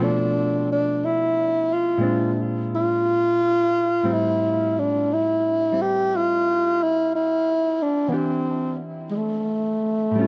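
A cassette-tape haze and a modest small-room reverb frame this intimate, melancholic jazz fragment, a slow swing at 59 BPM in 4/4, tuned slightly flat to A4 = 436 Hz and cut from a longer piece. Up front and close-miked, a breathy tenor saxophone carries the melody with a whispered subtone, soft attacks, scooped notes and vibrato, its tape echo trailing each phrase. Beneath it, a clean, fingered hollow-body electric guitar sits dark and low in the mix, comping through Bm7b5, Bb9, Am7 and Em7b13 for the full 10.3 seconds.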